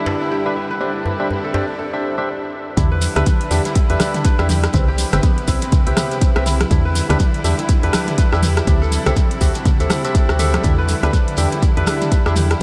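Over a swung 4/4 groove at 122 BPM in E minor, this spiritual afro house excerpt opens with ringing kora arpeggios, barky electric piano stabs with chorus and tape echo, gritty background strings and a brief cracking djembe, then drops at 2.8 s into a punchy up-front kick, metallic-hatted house kit, congas, grainy shekere and a woody FM bass that pumps along with the kora, piano and strings, all dreamily drenched in a huge ambient reverb.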